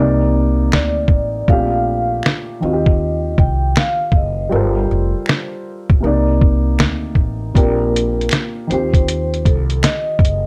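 Lo-fi hip hop at 79 BPM with a swung 16th feel, mellow and nostalgic, in which a dark, woody upright piano treated with cassette tape, a low-pass filter and plate reverb opens alongside a growly pizzicato upright bass, before a ringing soft-mallet vibraphone melody with medium motor vibrato, a muffled, pitched-down sampler-style drum kit with thumpy kick and fat snare, and a very quiet finger snap all enter at 0.7 s over extended jazz chords beginning on Cm9, in this short excerpt cut from a longer piece.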